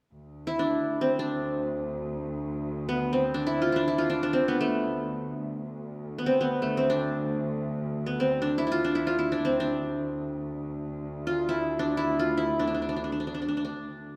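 Soulful and melancholic, this Arabic passage, cut from a longer piece, sets a plectrum-plucked qanun melody up front, its triple strings sounding bright-edged against a low drone from a muted cello section. The bowed cellos, played con sordino with light vibrato, sound dark and veiled from 0.1 seconds, and the qanun enters above them at 0.5 seconds. Both are carried by a moderate concert hall reverb.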